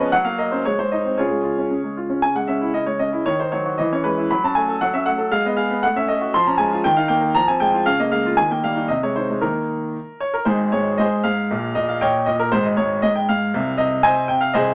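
A bright grand piano sits up front in a moderate studio reverb, its brilliant, open tone ringing with long sustain. This is a classical-period piano sonatina in 2/4 at 117 BPM with a straight feel, playful and elegant in mood, cut from a longer piece. The solo piano plays throughout the 14.7 seconds, ranging from Ab1 up to C6. It opens briefly around Gb, Ab and Db before settling into C# minor at 2.2 s, moving through chords such as D#m7, F#m and Fdim/Ab. At 6.3 s the harmony turns toward Ab major, passing through Eb, Fm and Bbm7/Db to a bare Eb5. The closing stretch from 10.5 s moves from Ab to Eb5/Bb, sheds its chords for a moment, then lands on a Cmadd11.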